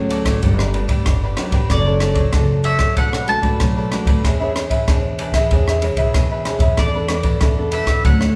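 A picked mandolin with woody double strings carries the melody throughout this short, festive excerpt of samba and choro, soloing from start to finish over a playful, straight 4/4 groove at 94 BPM. Beneath it, a crisp picked cavaquinho and a fingerpicked nylon-string guitar with a classical tone fill out the accompaniment, moving through Gmaj7, Dmaj7/F#, Bm7 and E6 before settling on E7sus4 at 6.8 seconds. An upright bass played pizzicato on steel strings anchors the low end. A compact cocktail drum kit sits up front, entering at 0.1 seconds with a punchy kick, dark ride cymbal and rim clicks. The band plays live together in one room, and a generous studio reverb gives the whole ensemble a lush, open sound.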